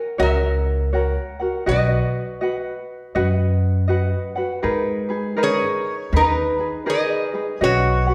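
Hawaiian music with a dreamy, relaxed mood, this short passage, cut from a longer piece, moves with an easy swung lilt. A lap resonator guitar carries the melody up front, its slide tone metallic and nasal, with the bright bite of fingerpicks. Beside it, a tenor ukulele plays a light, thumb-plucked accompaniment in the same register, acoustic and bright. An upright bass enters at 0.2 seconds, plucked pizzicato on steel strings for a woody, dark foundation. The harmony drifts from F# to B, then shifts to G#madd9 at 4.6 seconds as a second section begins, returning to B near the close. The players sit at a distance in a wet recital hall, whose 1.4-second reverb gives the trio a spacious, hazy glow.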